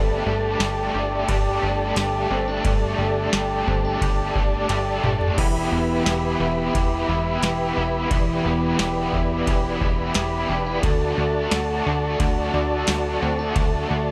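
A moderate plate reverb with a 2.9-second tail bathes this ethereal, floating dream pop excerpt at 88 BPM, where a raw, double-tracked garage guitar with overdrive, tremolo and analog chorus plays bright accompaniment beside a mellow, flute-like tonewheel organ holding sustained chords with chorus vibrato and key click. An electric guitar at the edge of break-up picks compressed arpeggios through subtle chorus and delay, while a punchy, funky analog bass with a fast-attack filter pluck and moving notch sits up front. A booming analog drum machine with a deep kick, crisp snare, tambourine, ride, crash and toms enters at 0.6 s and plays a fill at 4.7 s, as the chords move from Gsus2 to Em to D.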